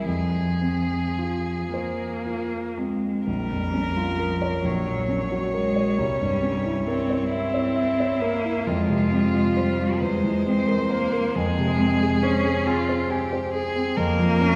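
Heard from further back in a concert hall with a long, wet reverb, this cut from a slow, yearning and solemn classical piano-trio movement in F minor moves with rubato in 6/8 at 35-46 BPM, with a rich, focused violin singing the melody with vibrato over a clear bowed cello line and a warm, polished baby grand accompaniment, while the harmony passes from Fm through Bbm to a tense C7b9 at 6.0 seconds before returning to Fm at 8.7 seconds.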